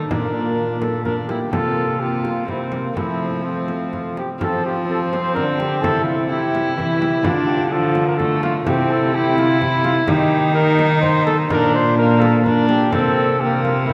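A classical, Renaissance-style consort dance in triple time, this stately, courtly passage is cut from a longer piece. A dark, distant cornet carries the melody up front, while a single bowed viola with a gut-string, reedy tone and a smooth top plays a second line beneath it. A rich, period-style cello, bowed by one player, anchors the bass, and a close-miked, warm solo trombone adds accompaniment in the background. A fingerpicked concert harp rings behind them, and a deep, large frame drum sits back in the mix with the sound of a small room around it. The ensemble is set in a long, wet church reverb, and the harmony moves through chords such as Bb, F, Dm and Eb before arriving on C7(no3) at 12.9 s.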